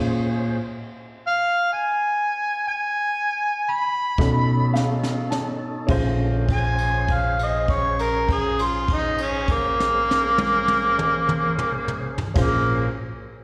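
A mellow, up-front harmonica carries this soulful, brooding slow blues in 12/8. It enters at 1.3 seconds with vibrato, scooped notes, overdrive and slapback echo, and later settles into a long held note from 5.9 seconds. Beneath it, a woody vintage upright piano with long sustain and slapback echo, a lightly overdriven tonewheel organ on a slow rotary speaker, and a thumpy, gut-strung upright bass hold the harmony as the band slows through a stop; a brushed drum kit with dark cymbals, a high-tuned snare and a boomy kick then arrives at 4.2 seconds with a fill alongside a piano fill, all heard as a live gig through the venue's PA with recital hall reverb, cut from a longer piece.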